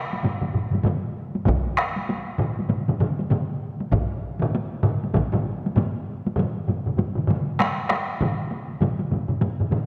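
Bathed in a concert hall's long, wet reverb, this ceremonial and powerful fragment of Japanese traditional taiko drumming moves at 98 BPM in 4/4 with a swung sixteenth-note feel, as several taiko ensembles struck with hard sticks sit at different depths: one close and dry, one up front in a small room, and one pushed into the background of a live room, while a fourth close, dry and up-front group joins at 1.5 s and drops out at 5.3 s before the piece shifts into a new section at 6.4 s.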